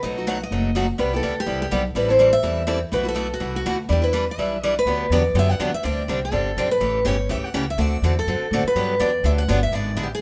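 Set in a moderate studio reverb, this fiery, swinging jazz manouche excerpt races along at 247 BPM in E minor before shifting to G major at 4.9 s, with a bright, fresh-stringed steel-string acoustic guitar carrying the melody up front over a boxy parlour steel-string guitar's accompaniment and a woody, thumpy pizzicato gut-string upright bass, all three playing throughout.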